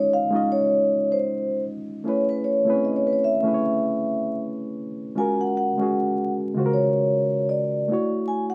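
R&B at 77 BPM in 4/4, this short excerpt carries a warm, soulful mood with a gentle sixteenth-note swing, cut from a longer piece. A vibraphone played with soft mallets carries the melody between B4 and Ab5 from 0.0 to 8.5 seconds, its metallic, ringing tone mellow and warm with a slow motor vibrato, sitting up front. Beneath it, a reedy, barky electric piano supplies the accompaniment across Db3 to Eb5, bright and lightly overdriven through its built-in speakers, also placed close in the mix. The harmony drifts through lush major-ninth chords, moving from Dbmaj9 to Amaj9, then Gbmaj9, and finally Dmaj9. The two players sound as if they are together in one room, wrapped in moderate studio reverb with a layer of vinyl crackle adding a dusty, lived-in character.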